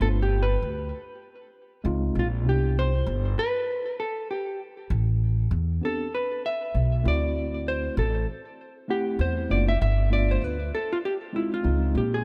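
A small room's light reverb surrounds this smoky, mellow jazz-hop excerpt, a short cut from a longer hip hop piece at 98 BPM in 4/4 with a swung sixteenth-note feel. Up front, a dark, clean hollow-body electric jazz guitar plays a fingered solo melody from the start, its tone trailed by delay. Underneath, an acoustic upright bass with gut strings sits just as close, giving pizzicato notes that sound woody and thumpy. A tine electric piano, mellow, warm and clean as if heard through its built-in speakers, fills out the accompaniment until 12.0 seconds, while guitar and bass carry on to 12.2 seconds. The harmony moves through jazzy extended chords such as G9, C#maj7, Cmaj7, Am11 and D9, with the whole band tuned slightly high to A4 = 441 Hz.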